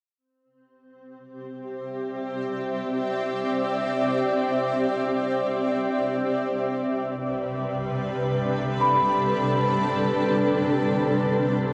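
Floating in free time, this weightless ambient fragment from a longer piece rests on a blurred, detuned granular cloud pad of sustained chords that enters at 1.4 s and moves from Cadd9 to C6, while a bell-like, delicate celesta arrives in the background at 8.8 s with arpeggios on a high B5 trailed by a diffuse delay, the whole recording set in a lush hall reverb and the warbling pitch drift of worn cassette tape.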